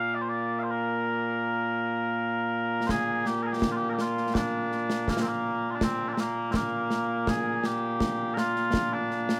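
Mellow, sweet small bagpipes carry a continuous melody up front, playing alone at first in a proud, ceremonial piece of Scottish traditional pipe music in 3/4. At 2.9 s a concert snare drum and concert bass drum join, close and dry with dark cymbals, as the same melodic section repeats. Light reverb colors the recording in this short excerpt cut from a longer piece.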